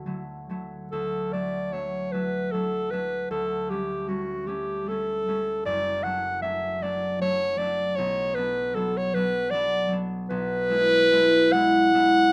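The music sways in a lilting 6/8 with rubato, its beats stretching and relaxing unevenly. This serene, tender romantic duo for clarinet and concert harp is an excerpt cut from a longer piece, running about 12.3 seconds. The mellow, present clarinet sings the solo melody up front in a classical style, between F#4 and F#5. The fingerpicked concert harp accompanies throughout, its ringing acoustic tone spanning from deep F#1 up to F#5 and sitting close beside the clarinet. Close, detailed microphones and a touch of light reverb give the pair an intimate, softly glowing sound as the harmony drifts gently through a few chord changes.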